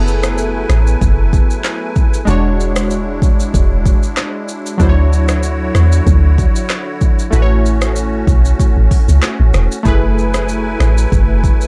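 A dark, dry production frames this breezy, joyful afrobeats excerpt in A major at 95 BPM with a lightly swung sixteenth feel, where a deep, round log drum bass sits up front beneath an overdriven electronic afro-pop kit of deep kick, metallic hats, snaps, handclaps, rim clicks and shaker, while detuned sawtooth analog keys with chorus and a filter sweep comp through F#m11, E13, Dmaj9 and A6 over a reedy, shimmering musette accordion holding sidechain-pumped chords.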